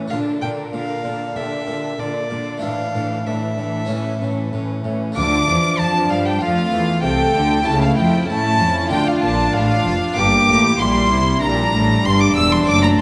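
A straight 4/4 pulse at 96 BPM drives this stormy, dramatic baroque-style concerto movement in D minor, cut from a longer piece, where an expressive solo violin with portamento sits up front over a smooth, rich violin section sharing the melody in the background, a soft, intimate second violin line, a vibrato-laden viola section, a dry, close-miked yet full harpsichord and a background cello section with gliding portamento, joined at 5.2 s by a focused double bass section, inside a wet concert hall reverb.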